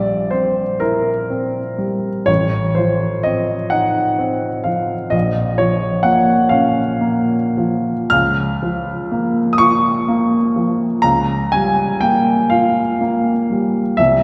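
Classical romantic nocturne for solo piano, melancholic and yearning in mood, unfolding in a slow 6/8 with uneven, rubato beats that let the phrases breathe and stretch. A baby grand carries the entire passage from start to finish, its tone warm, present and up front, ranging from A1 in the deep bass up to F6 in the treble. The harmony leans on unresolved tension at the outset, moving from C7 over a Bb bass to F7 over A before settling into B-flat minor at 5.1 seconds. From there the bass shifts to Db beneath the minor chord and then beneath a half-diminished G chord, keeping the yearning unresolved as the phrase continues. A wet church reverb with a long 2.6-second decay surrounds the piano, lending the playing a spacious, resonant halo. This short portion is cut from a longer piece.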